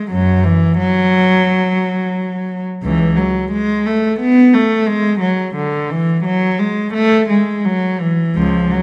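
Serene and dance-like, this brief excerpt from a longer piece is a baroque-style suite movement for solo cello at 87 BPM in 4/4, played with a rubato feel and tuned to A4 = 441 Hz. A single bowed cello sits close and up front for the full 8.8 seconds, spanning C#2 to B3 with a soft attack, expressive vibrato and gliding portamento. Its warm tone blooms into a moderate scoring-stage reverb with a 1.8-second decay.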